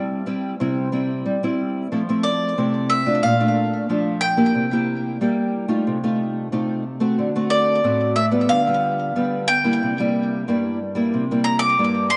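Playful and sunny, this short cut from a longer samba moves at 91 BPM in F major, with a bowl-back mandolin carrying the melody through picked double strings, touched with delay and set up front. Beside it, a small-sounding nylon-string guitar, fingerpicked and given an analog chorus, supplies warm accompaniment as the harmony opens on C and then shifts at 1.9 seconds into a run from Fmaj7 through Bbmaj7, C7, F7/C, D7 and G7/D back to C7. A long plate reverb soaks the dreamy mix, and the top end stays soft and rounded.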